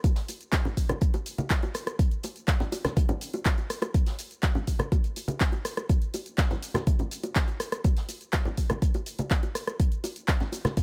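A steady, straight 4/4 house groove at 123 BPM runs through this short, drums-only cut from a longer piece, carrying a hopeful, expansive mood. The electronic kick drum sits up front as the loudest part, a deep, layered, produced thump re-recorded in a small room. Around it, the deep house kit adds handclaps, hi-hat, rim click and shaker, also up front and layered, with sidechain pumping on its hats and percussion. Bright, close and dry bongos and congas play throughout, their acoustic hits pumping with the sidechain as well. Far back in the mix, a very quiet jazz brush kit contributes hi-hat and a high-tuned snare played with brushes, its sound distant and roomy with a rolled-off top, while a studio reverb adds space across the full 10.8 seconds.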